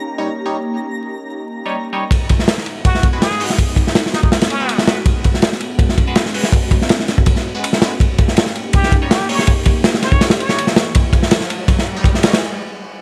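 A crunchy, saturated breakbeat kit with a punchy kick and dark cymbals drives this dark, atmospheric drum and bass excerpt from 2.1 seconds, under a barely audible round dub sub bass, an airy, breathy pad with chorus and phaser, nasal band-passed chord stabs with dub echo, a brief twinkling granular shimmer at the start, a plunger-muted jazz trumpet with wah-wah and vibrato, and an electronic riser, all over vinyl crackle in a small room.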